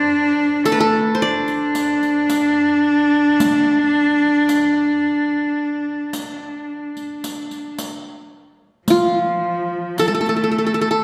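A fingerpicked qanun with a bright-edged, triple-string sound leads this soulful, hypnotic Turkish makam ensemble excerpt in D makam huseyni, tuned to A4 = 441 Hz, at 110 BPM in a straight 10/8, joined up front by a smooth, clear bowed cello carrying a second line with light vibrato, while an acoustic riq with its jingles enters at 0.7 seconds and stops at 10.4 seconds, the ensemble heard from further back in a wet concert hall with a 1.7-second reverb, and a new section arriving at 8.9 seconds.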